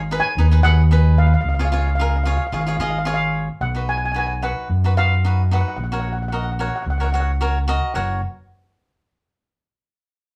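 Calypso at 111 BPM in F# major, this sunny, bouncy excerpt from a longer piece has a shimmering lead steel pan, played with soft rubber sticks, carrying a mellow melody while a picked, crisp cavaquinho adds acoustic accompaniment from 0.1 seconds. Underneath, an overdriven fingered electric bass sits up front with a dark, round, amped tone. The band plays live in one room with a wet studio reverb, moving through G#m7, C#, B and F#/A# before settling on F# at 7.9 seconds.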